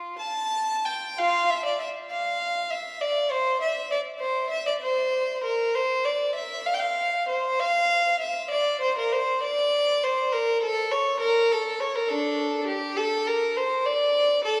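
Flowing and dance-like, this short excerpt from a longer baroque-style suite movement for unaccompanied violin moves in a lilting 12/8 at about 66 dotted-quarter beats per minute, with a rubato feel in F major and tuning at A4 = 438 Hz. A single bowed violin carries the whole 14.6 seconds, playing between D4 and A5 with a rich, smooth, even tone and vibrato. It sits up front in the mix yet takes on a distant quality, set in a wet church reverb with a long 3.4-second decay.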